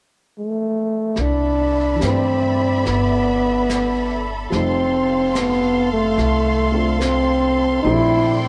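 A breathy, close-miked trombone with light vibrato enters alone at 0.4 s, carrying the melody up front in this intimate, romantic jazz excerpt at a slow 72 BPM swing in C major; at 1.2 s lush, distant bowed strings with portamento, a woody pizzicato upright bass and smooth, rolled-off brushed drums join beneath it, followed at 2.0 s by a boxy, slightly detuned upright piano in the background, all moving through Cmaj13, F7 and Bbmaj13 in a moderate plate reverb with lossy compression artefacts.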